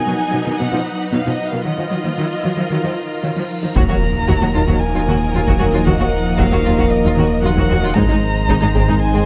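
Vast and brooding, this cinematic passage from a longer hybrid orchestral and electronic film score moves at 114 BPM in a straight 4/4, centred on Eb minor. It opens with a symphonic violin section carrying the melody in the background over a lush, expressive viola section and a cello section on the bass line, all bowed with vibrato. An ethereal, airy pad sustains chords beneath, softened by ensemble chorus and its own reverb, while a tight, nasal sequenced synth drives very quiet arpeggios. A huge, dark reverse cymbal at 3.6 seconds leads into an impact at 3.8 seconds, where the arrangement expands: a single violin takes a melody with portamento, a second violin section adds a smooth, even line, and very quiet French horn and trombone sections hold sustained chords. Rich double basses, a deep, full sub bass and a very quiet taiko ensemble with heavy sticks anchor the low end as the harmony moves from Ebmadd9 to Abadd9 at 8.0 seconds. 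Close, detailed microphones and light reverb keep the sound intimate despite its scale.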